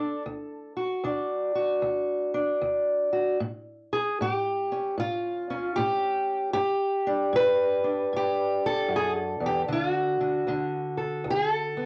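A fingerpicked steel-string parlour guitar with old strings, sounding dark, woody and boxy, plays alone and up front in this laid-back, swaggering acoustic country blues cut from a longer piece, swinging at 76 BPM in 4/4 in D major as it moves from D to A at 3.4 seconds, G at 6.5 seconds and back to D at 9.7 seconds, captured as a home cassette recording in a small, reverberant room.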